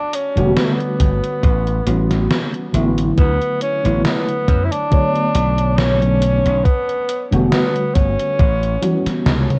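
Melancholic and hazy, this vaporwave fragment drifts along in a lightly swung 4/4, cut from a longer piece and steeped in the warbling pitch drift of worn cassette tape under a light reverb. A clear tenor saxophone carries the melody from the start, its smooth top and light vibrato given a classical-style poise and trailed by tape echo. Beneath it, a mellow FM electric piano lays down soft, round, dark chords with tremolo and ensemble chorus, moving through Em11, A13, D69 and Bm9 before circling back. A bright, punchy slap bass sits up front with tube saturation alongside a gated 80s digital drum machine of hi-hat, snare and toms drenched in gated reverb, while a thumpy electronic kick drum comes in at 1.0 seconds. A drum fill at 8.8 seconds closes the passage.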